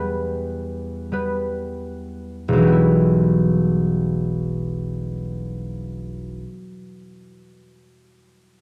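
Close, detailed microphones catch every ringing string of a fingerpicked concert harp, set up front in a moderate recital hall reverb of 1.3 s. This brief classical fragment in E minor is solemn and elegiac, moving in a slow, rubato 3/4 at about 45 BPM, with the harp's accompaniment spanning E1 to E6 over an E minor chord. The tempo slows through the first 2.5 seconds before a new section begins and carries on to the cut at 6.5 seconds.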